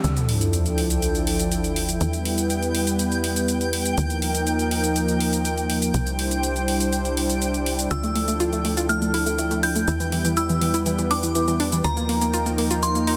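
A sub drop impact opens this emotional, bittersweet progressive house clip over an up-front, detuned analog pad with chorus, a tight, nasal sequencer bass and metallic electronic hi-hat layered with cabasa; a twinkling granular shimmer enters at 0.7 seconds, and at 7.9 seconds a crystalline, warbling FM bell with chorus, tremolo and delay arrives together with a round analog pluck arpeggio, all set in a lush hall reverb with a dense, heavily limited modern master.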